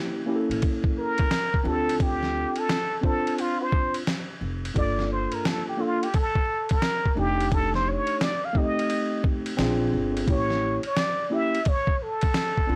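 A dry, gritty recording with transformer saturation, vinyl crackle and light reverb frames this mellow, smoky jazz-hop piece at 87 BPM with a swung 4/4 feel, where a worn, slightly out-of-tune tine electric piano, lightly overdriven through a combo amp, opens alone on A7b9 before compressed, muffled, pitched-down sampler drums with a thumpy kick and a woody, dark pizzicato upright bass join at 0.5 s, and a plunger-muted trumpet steps up front at 1.0 s for a jazz solo full of wah-wah, scooped notes and light vibrato.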